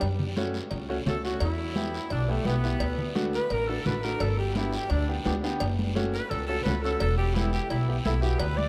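A danceable, fiery cumbia excerpt in which a woody pizzicato upright bass sits up front beside a raspy guiro, damped, high-tuned congas in the background and very quiet ringing cowbell and timbales, while a clear upright piano with audible action noise accompanies and a close-miked saxophone section with light vibrato carries the melody from 1.1 s, heard in a vast, echoing cathedral space.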